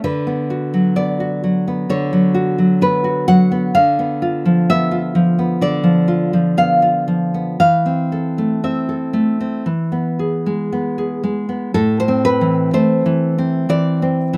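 A fingerpicked nylon-string guitar plays alone and up front in this melancholic, passionate romantic piece for solo classical guitar, moving with a free rubato in 4/4 through chords from Bm/D and Bdim/D to Am/E and E before a new section settles on Am at 11.7 s, its full-bodied tone spanning A2 to F#5 with audible finger squeak in a dry outdoor setting, tuned slightly low to A4 = 437 Hz, and cut from a longer piece.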